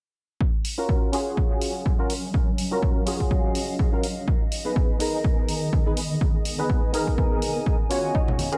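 A punchy, tape-warm electronic kick drum sits up front in this late-night deep house excerpt, driving a 4/4 pulse at 124 BPM with a 56% swing on the sixteenths in Eb minor. A hollow, nasal percussive organ stab, also up front, arrives at 0.8 seconds with a dark, decaying tone, ensemble chorus, dub echo and sidechain pumping, while a filter sweep runs across it from 0.4 seconds onward. An analog-toned electronic hi-hat joins the kick, and from 1.7 seconds a cloudy, blurred granular pad drifts in with a slow attack and long release, evolving through its own reverb and pumping against the beat. The harmony moves from Ebm9 to Abm/Eb at 4.3 seconds, and only near the close do a round, nasal analog pluck arpeggio, sitting in the background with chorus, phaser and dub echo, and a short burst of bright, saturated congas appear. The mix is lightly reverberant and heavy with echo, giving the small-room drums and hazy synths a warm, late-night glow.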